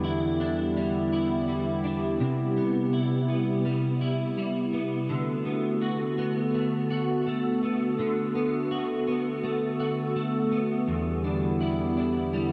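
Dream pop at 83 BPM in D major, dreamy and blissful, where a hollow, flute-like pad with a slow attack and chorus holds sustained chords while a clean, picked electric guitar plays arpeggios through ensemble chorus and analog delay, both up front from 0.0 to 12.5 seconds over Em7, Cmaj7 and D6, with the mix soaked in a huge ambient reverb.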